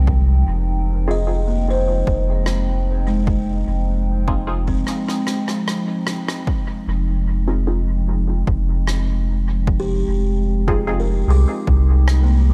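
A warbling, nostalgic pad opens this meditative ambient dub piece at 75 BPM in F minor alongside the kalimba and sub bass, holding a dark, detuned Fm7 chord with chorus and its own built-in reverb. A woody, buzzing kalimba plays soft, ringing arpeggios through dub echo, and a round, sine-like sub bass sits deep and up front beneath it. An overdriven electronic kick drum gives a punchy, layered pulse in a straight 4/4. A muted, filtered dub chord stab enters at 1.1 seconds, its short sawtooth hits colored by phaser, lush chorus and dub echo, and an acoustic rim click with a big-room character and echo follows from 2.5 seconds. A drum fill at 4.9 seconds breaks up the spacious groove, and the whole passage sits in a small room reverb, cut from a longer piece.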